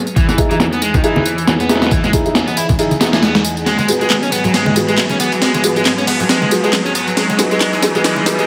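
Lightly reverberant digital ambience frames this gritty, funky breakbeat build-up, cut from a longer piece, with filter sweeps running through its drums, piano and pad. An up-front, overdriven sampler-style breakbeat kit with a thumpy kick leads the groove alongside layered electronic tambourine and handclaps and damped, low-tuned congas in the background. A double-tracked, overdriven semi-hollow guitar riff and dark, boxy baby grand piano stabs both carry 12-bit sampler grit and delay over a lush, detuned unison pad, while a background riser enters at 1.3 seconds and a drum fill runs from 3.7 seconds.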